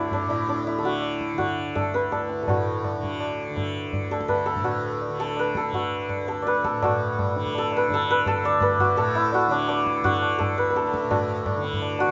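Set in a triple metre at 167 BPM with a straight feel, this brief cut from a longer Hindustani classical performance gathers pace from start to finish. It sits in raga bhupali on D and carries a radiant, meditative mood. The hammered santur leads the melody up front, its bright, shimmering strings ringing between D4 and D5. Beneath it, a softly plucked tanpura sustains a buzzing drone from D2 to D3, with the low-tuned tabla entering at 0.1 s and sitting close in the mix. A second section begins at 6.8 s and runs to the end at 12.1 s. Moderate studio reverb gives the acoustic instruments a modest sense of room.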